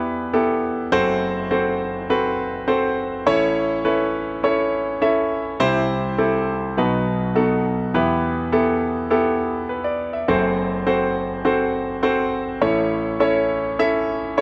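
A polished concert grand piano opens the recording alone, and it carries the whole fragment, taken from a longer pop piece, by itself. The mood is earnest and dramatic, set in a straight, steady 4/4. The piano spans from F#1 up to E5, so its deep bass gives the low end real weight while the upper notes ring clear and present. Its short sustain keeps each chord tidy, and the instrument sits up front in a light reverb. The harmony moves from Em through F#dim, A, C and B, then at 7.9 seconds a second section returns to Em, F#dim and A before the clip ends at 14.4 seconds.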